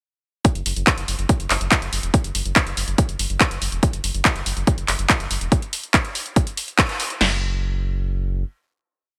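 A heavy, up-front electronic kick drives this hypnotic, intense psychedelic trance piece at 142 BPM in a steady four-on-the-floor pulse, layered from 0.4 seconds with a punchy snare, crash cymbal, tape-tinged programmed hi-hats and handclaps on the backbeat, while a deep, round analog bass with tube saturation rolls in sixteenth notes between E1 and F#1, the band hitting an accent at 6.8 seconds before the drums stop and the bass rings on into the final note under light reverb.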